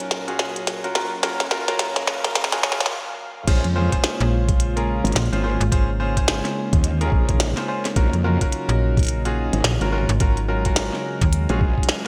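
This glitch hop excerpt opens on a build-up: a smooth, detuned sawtooth pad holds sustained chords under a filter sweep, a bright grand piano with audible action noise plays stabs through digital delay, and a glitchy drum kit with a tiny snare, clicky hats and crash cymbal runs a fill through gated reverb. A short break at 2.9 seconds gives way to the drop at 3.5 seconds, where a pitched-down, overdriven electronic kick and a growling, wobbling bass arrive together. The growl bass is aggressive and saturated, shaped by a formant filter, distortion and chorus, and a snappy FM bass with a metallic attack and decaying notes joins it at 4.2 seconds. Both the pad and piano pump against the sidechain at a swung 107 BPM in Bb minor, moving from Ebm7/Bb to Bbm7 at the drop and on to Ebm7. The mood is playful and gritty, with a bright, 1980s-style digital sheen and light ambience over the mix.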